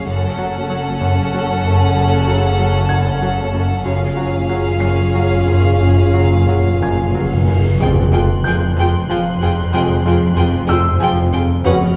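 In a straight 3/4 at 94 BPM, this ominous, tense passage of suspense film score is cut from a longer piece. Bowed string sections played sul tasto with light vibrato and soft attacks hold it together: a rich violin melody above a dark second violin line, a background viola accompaniment, and cello and double bass sections anchoring the low end. A clear French horn section sustains chords throughout, while a fat, saturated sawtooth analog bass riff with a filter sweep and a swarming, granular sine drone with its own reverb churn beneath, and a thick-felted upright piano adds a mellow texture from 2.9 s. Round, soft-mallet timpani play a fill from 3.9 s, and a reverse cymbal rises into a huge, dark impact at 7.8 s, where the harmony shifts from F#m and C#/F# to Fmadd9 and the key settles into F Hungarian minor. At that moment a very quiet trombone section joins the sustained chords and a high, smooth-topped violin texture appears. 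The whole is bathed in the wet reverb of a recital hall.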